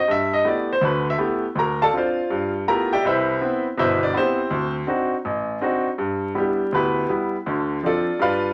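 A wet studio reverb and a layer of vinyl crackle surround this short solo jazz excerpt, cut from a longer piece. It moves at a brisk 163 BPM in 4/4, with an eighth-note swing that gives it a playful, sophisticated lilt in G major. A clear baby grand piano carries everything alone from 0.0 to 8.5 seconds, sitting up front with a natural tone and long sustain across a span from G1 to Bb5. The harmony passes through colorful chords such as G6/9, Dm7, G13, Cmaj7 and D7b9 before returning to G6 and Dm7. The passage falls into two statements of the same section, the second beginning at 6.0 seconds.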